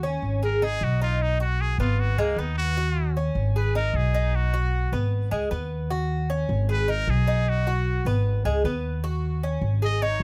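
A nasal, straight-muted trumpet enters at 0.4 seconds with a scooped, jazz-style solo over bright, metallic Cuban tres arpeggios on doubled strings and a woody, growly pizzicato upright bass, both up front, in a nostalgic, danceable Cuban son and guajira groove at 153 BPM in 4/4 that cycles through Abm, B and Ebm7, captured in a close, dry recording cut from a longer piece.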